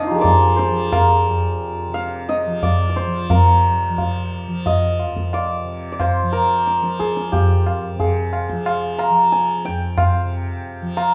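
A hammered santur and a softly plucked tanpura open together at 0.0 seconds in this solemn, longing excerpt of Hindustani classical music, set in raga Bhimpalasi on F and tuned to A4 = 441 Hz. The tanpura holds a bright, buzzing drone low beneath, while the santur carries the melody up front with a ringing, shimmering tone. A low-tuned tabla with a short ring joins at 0.2 seconds, sitting up front with a small-room character. The music moves in a straight 4/4 at around 89 BPM and gradually speeds up, with a new section arriving at 3.3 seconds. A recital hall reverb gives the whole performance a spacious, resonant setting.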